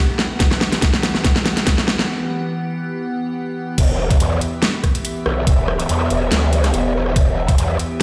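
Heavy wobble dubstep in E minor at 142 BPM, menacing and chaotic, moving in a swung half-time feel over 4/4 and cut from a longer piece. An evolving wavetable pad holds sustained chords from the very start, its morphing, unison tone treated with chorus, phaser, built-in reverb and sidechain pumping. The dubstep drum kit enters at 0.2 seconds with a huge snare, metallic hats, rim clicks and crash cymbal sitting up front, joined by a knocking, tape-warm electronic kick, while a drum fill drives the build-up before a short break. At the drop at 3.8 seconds a growling, wobbling bass arrives, saturated and compressed with overdrive and chorus, bright and aggressive beneath a formant filter. The whole mix carries light reverb and the echo of a bare stone room, as though blasted through a big sound system.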